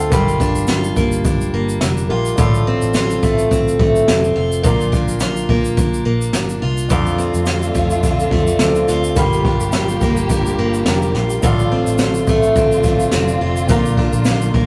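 A rough rehearsal-room recording with tube saturation and light reverb carries this heartfelt, easy-going acoustic pop excerpt at 106 BPM in 4/4, with a sixteenth-note swing. A bright picked steel-string acoustic guitar and a small-room jazz brush kit with a high-tuned snare and boomy kick sit up front over a dark, foam-muted electric bass, while a clear concert grand piano stays in the background and adds a fill at 10.6 seconds. From 6.9 seconds a lush, distant string section enters with expressive vibrato and portamento, sustaining chords as the harmony cycles through Gm7, F6/A, Bb and F6.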